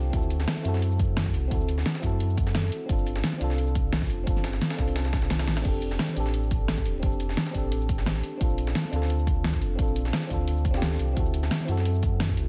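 Liquid drum and bass with a lush, dreamy mood, heard as a short cut from a longer piece. A mellow FM electric piano carries the chords, its soft, round tone touched by a noise layer and softened further by chorus and tape echo, moving through D7, G9sus4, F69 and Bbmaj9 before returning to D7 at 11.2 seconds. Beneath it, a deep sub bass with an added octave holds sustained, full notes with a fast attack, sitting well forward in the balance. The drums stack three layers: a punchy, layered electronic kick, a pop kit with a fat snare, metallic hats, shaker and crash, and a gritty, compressed breakbeat sampler-style kit whose high-tuned snare and hats are thinned by high-pass filtering. A drum fill arrives at 5.5 seconds, and the whole piece sits in digital ambience with a dense, heavily limited modern master.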